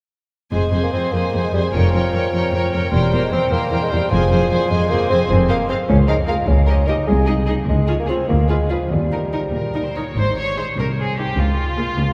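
A dark, up-front solo bassoon with light vibrato carries the accompaniment in this dramatic, restless fragment of a quick classical-period movement for symphony orchestra, set in 6/8 with a rubato feel. Around it, muted string sections play con sordino with a veiled, shadowy tone and vibrato. One violin section sings the melody, set softly and at a distance, above a second violin line. A close, soft-edged viola section fills in the accompaniment, while cellos and smooth-topped double basses anchor the bass. Everything begins at 0.5 seconds, the bassoon drops out at 10.0 seconds, and the strings carry a brief new section from 10.2 seconds, all bathed in a long cathedral reverb.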